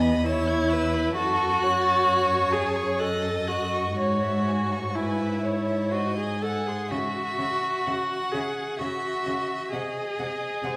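Up front, a smooth, even viola carries the accompaniment in this yearning, elegiac excerpt from a slow romantic movement for string quartet in C# minor, played at 63 BPM in 3/4 with rubato, while a focused, clear violin sings a second line, a rich violin melody with vibrato sits in the background, and a cello bass adds expressive portamento with a soft attack, the quartet heard from further back in a reverberant recital hall.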